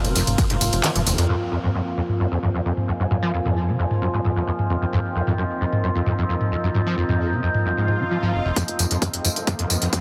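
A squelchy, gritty acid bass sits up front through this excerpt of driving peak-time techno, its resonant sawtooth riff saturated with cassette-tape grit, chorus, digital delay and sidechain pumping, and a filter sweep runs across it from 1.3 to 8.6 seconds. The mood is intense and hypnotic, set in a straight 4/4 over an F power chord that settles onto F minor. An overdriven electronic drum kit with smooth hats, handclaps, ride, tambourine and toms plays throughout, while the heavy overdriven kick drops out at 0.8 seconds, where the band hits an accent, and returns at 8.6 seconds for the build-up. A tight, punchy sequencer bass appears only at the opening and again near the close, beneath a bright drone of moving, ring-modulated overtones and a deep, moody pad that warbles with a vintage, detuned softness. An electronic swell enters at 7.8 seconds, followed by a riser at 8.6 seconds, to push through the build, and the whole mix carries a heavily compressed radio sound with light reverb.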